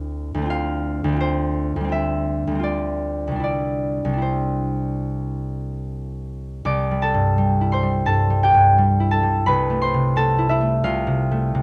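Unfolding in a free, rubato 4/4 that drifts between 66 and 89 BPM, this short classical excerpt for solo concert harp carries a wistful, gentle mood in C major, tuned slightly high at A4 = 441 Hz. The harp is heard alone for the full 11.6 seconds, fingerpicked and ringing, its tone warm and up front as it spans from C2 to D6. The harmony moves through lush extended colors, opening on C6/D and passing through Dm7, Dm11 and Cadd9 before a second section arrives at 6.7 seconds with C69 and then settles on Dm9/C. Close, detailed microphones capture the intimacy of each plucked string, while a moderate recital hall reverb of about 1.7 seconds lends the resonance a soft halo. Cut from a longer piece, it feels like a gentle, reflective moment caught mid-thought.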